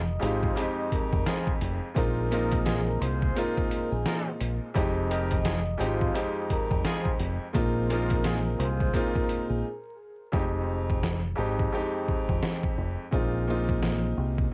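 Boom-bap hip-hop at 86 BPM in F minor, moody and tough, with a swung 16th-note feel, cut from a longer piece. A gritty, pitched-down sampler-style drum kit with a thumpy kick and a round, punchy dub bass sit up front alongside a smooth, vintage grand piano cycling between Fm7 and Bb7sus4. A mellow, ringing vibraphone melody with slow motor vibrato and background trumpet stabs run through cassette tape and tape echo, the trumpets ending at 9.2 seconds and the vibraphone at a brief break at 9.6 seconds, after which the hi-hats drop out from 10.3 seconds, all under lo-fi vinyl crackle with little reverb.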